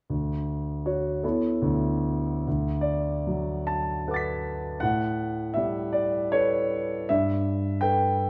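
Impressionist classical solo piano in a dreamy, hazy mood, this brief excerpt from a longer piece drifts in a rubato, uneven 3/4 as an up-front concert grand with deep bass, open tone and long sustain moves through lush extended harmonies from Dmaj7 and Bm11 to D6, A13 and G69, set in a moderate recital hall reverb with a dark, warm production.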